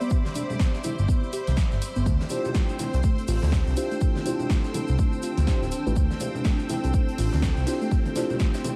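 A warm, lightly reverberant small-room sound with vinyl crackle carries this relaxed deep house excerpt at 123 BPM, where an up-front punchy kick and a smooth, saturated gliding sawtooth bass from 1.0 s anchor swung grooves from a punchy analog drum machine, band-limited vintage congas, a grainy tube shaker and a very quiet acoustic rock kit, while silky string-machine chords, shimmering background violins, a cloudy granular pad, a soft round delayed pluck arpeggio and a dark, phased FM electric piano stabbing from 2.3 s all pump with the sidechain over Cmaj9 and Dm11.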